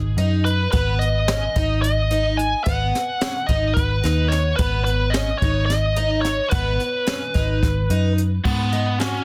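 Brooding and tense, this short cut from a longer progressive instrumental moves in 7/8 at 218 BPM counted in eighths, with a straight feel in G# minor. A dark, foam-muted vintage electric bass opens at 0.0 s, round and up front, anchoring the low end as the harmony shifts between B/G# and G#m7. A picked twelve-string acoustic guitar adds shimmering, octave-doubled arpeggios in a narrow middle register, while a drum kit played with brushes brings dark cymbals, a high-tuned snare with a touch of soft clipping, and a boomy kick from a studio room. Entering at 0.4 s, a biting lead guitar carries the melody up to G#5, its overdriven, picked tone sitting forward and trailed by digital delay. Light reverb surrounds the parts, and the mix is dense and heavily limited in a modern style.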